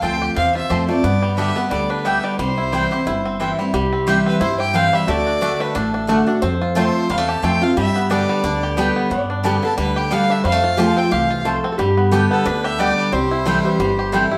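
Lively and driving, this swung bluegrass excerpt puts a clear, earthy bowed fiddle with light vibrato up front on the melody, over a bright, full-bodied dreadnought guitar with audible finger squeak, twangy, percussive fingerpicked banjo arpeggios, double-string stabs from a picked mandolin, and a woody pizzicato upright bass. At 3.7 s a mellow, nasal lap resonator guitar played with slide and fingerpicks adds a metallic second line. The whole band is heard from further back in the room through a wet studio reverb.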